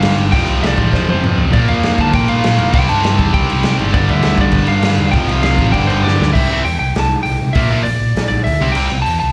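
Upbeat and rowdy, this snippet cut from a longer punk rock song charges along at 199 BPM in a straight 4/4, heard as a live club gig through the venue's PA. A twangy, slightly broken-up lead guitar with slapback echo carries the melody over two picked, distorted rhythm guitars, one tight with its own slapback and the other scooped and compressed in the background. A growly, overdriven picked bass and an up-front garage drum kit with a punchy kick and a dark, rolled-off top drive it all, with fills at 0.9 and 6.0 seconds before the band drops into half time at 6.3 seconds.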